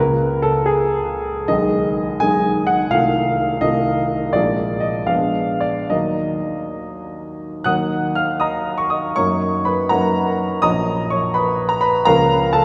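A clear, present grand piano plays alone with long sustain, up front in a wet church reverb, through a stormy, bittersweet romantic character piece in E-flat minor, moving in a rubato 6/8 at roughly 67-87 BPM across a range from Bb1 to Gb6, with chords passing through Bb7b9 to settle on Ebm at 5.9 seconds before the opening idea returns at 7.7 seconds in this short passage cut from a longer work.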